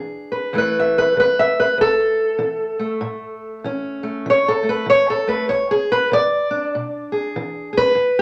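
A dark, boxy parlour-style steel-string acoustic guitar, fingerpicked and up front, plays alone for the whole 8.2 seconds of this short clip from a longer acoustic country blues piece, a soulful, laid-back 97 BPM swung 4/4 passage tuned to A4 = 441 Hz that moves from E7 to A and back to E7 at 5.5 seconds, ranging from E2 to E5 inside a wet small-room reverb.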